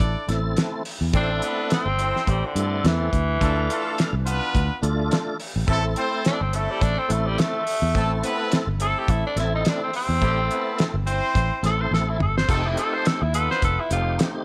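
Soul blues with a straight-eighth feel and a lightly swung sixteenth lilt, this short cut from a longer piece sits in a mournful, brooding mood. A cloth-damped drum kit thuds up front with a fat snare, tight kick and dark cymbals, joined by a round, foam-muted fingered electric bass that also sits up front. A tonewheel organ enters at 0.3 seconds, lightly overdriven and full through a slow rotary speaker with chorus vibrato, while a bright horn section holds sustained chords in a loose, jazz-style voicing with octave doubling and light vibrato. The raspy, gritty tenor saxophone comes in at 1.2 seconds and carries the solo up front, its vintage edge cutting clearly over the band. The harmony moves from A minor to D minor and back, with a drum fill at 11.9 seconds leading into an F7 near the close, all set in a small room with light reverb.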